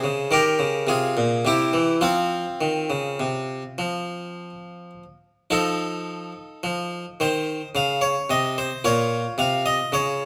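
Classical baroque-style suite movement for solo harpsichord in a grave, flowing 3/4 with rubato, the bright, plucked French-style instrument on a single set of strings heard close and up front, full yet dry in itself, set in a wet stone room whose reverb lingers around it through two statements of the same opening section in this brief cut from a longer piece.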